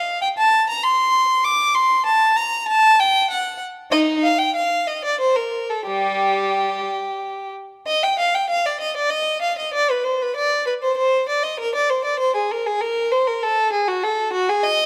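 A lone bowed violin opens the recording, playing a baroque-style suite movement in G minor that feels introspective and flowing. Its tone is rich and focused, colored by vibrato and placed up front, and it covers a span from G3 to D6. The music moves in 3/4 at about 97 BPM, but the rubato phrasing lets the pulse breathe freely. At 7.9 seconds the key shifts to C minor as the opening material returns for a second pass. A moderate recital-hall reverb surrounds the single player, and the passage is cut from a longer piece, ending at 14.9 seconds.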